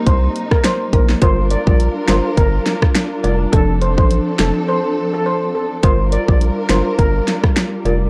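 Riding a 104 BPM dancehall groove in 4/4 with a light 16th-note swing, this hypnotic, tough slice of a longer piece sits in G minor and moves through Cm7, Gm7 and F6 before returning to Gm7 at 5.8 seconds. A punchy, up-front pop drum kit with a fat snare sets the pulse, layering kick, snare, hi-hat, rim clicks and finger snaps with an electronic, produced edge. Beneath it, a round analog bass with a fast attack holds the low end, deep and sustained, sitting just as far forward. A metallic, shimmering steel pan carries the melody with a trail of tape echo, while a woody, rustic marimba played with medium mallets joins at 0.9 seconds as background accompaniment. A dark, lush studio string section sustains bowed chords with vibrato, pumping under sidechain, and a short break from 4.7 to 5.8 seconds interrupts the flow. The whole mix has a dry, gritty small-room character with a cassette-tape grain.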